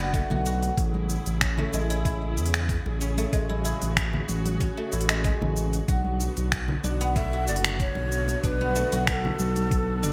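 Warm and earthy, this excerpt of organic downtempo in B dorian moves at 94 BPM in a straight 4/4, with a lush bowed string section holding sustained chords under sidechain pumping, a silvery fingerpicked guzheng rippling arpeggios through digital delay, a smooth gliding synth bass with vibrato and portamento sitting up front, a gritty thumpy electronic kick, an overdriven electronic kit of finger snaps, smooth hi-hat and shaker in gated reverb, ringing close congas in the background, and a breathy end-blown ney carrying the melody with delay from 7.2 seconds, all set in a bright 1980s-style digital production over Bm7 and Amaj7 chords.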